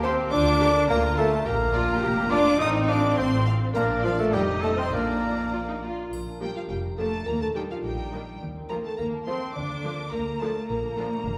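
A playful, whimsical film cue in Bb major at 105 BPM in 2/4 opens with the full ensemble at once: a buzzing, woody marimba played with medium mallets carries the melody alongside a clear, smooth violin section. Beneath them, a second, lush violin section and a distant, roomy oboe trace a second line, while a focused viola section and a soft-attacked bassoon fill in the accompaniment. A dark, tight French horn section holds sustained chords, a bright concert harp rings out arpeggios, and intense cellos and an even, far-off double bass section anchor the bass. The oboe, bassoon and horns drop out at 5.8 seconds, and a dry triangle adds a brief, glinting touch at 6.1 seconds as the opening material returns. The second pass moves through Ebmaj7 and F7/Eb before settling back on Bb. Everything sits in a wet concert hall reverb that lends the cue a magical, storybook glow, and the recording is cut from a longer piece.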